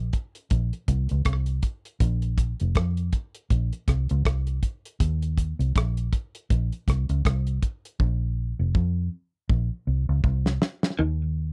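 A deep, hypnotic dub reggae excerpt opens on a dark, round, foam-muted fingered electric bass and a cloth-damped, thuddy drum kit with a fat snare, rim clicks and hi-hat, both dry and up front in a close 1970s-style studio sound, moving through Bb5 and Eb5 chords with a swung sixteenth feel before a drum fill from 8.0 seconds leads to a brief clean, picked electric guitar note at 11.0 seconds.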